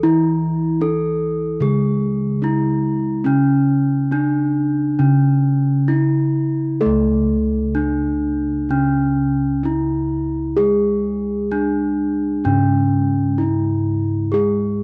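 A bronze gamelan-type metallophone carries the melody up front, struck with a wooden mallet and captured close and dry so its ringing tone sits sharply forward. Beneath it a second metallophone played with padded disc mallets gives a mellow, soft accompaniment, while bossed gongs under padded beaters add a round, beating bass. This stately, shimmering Javanese gamelan passage in C# pelog moves in a straight 4/4 at 64-78 BPM, shifts into a new section at 6.8 s, and sits in a small room's light reverb, cut from a longer piece.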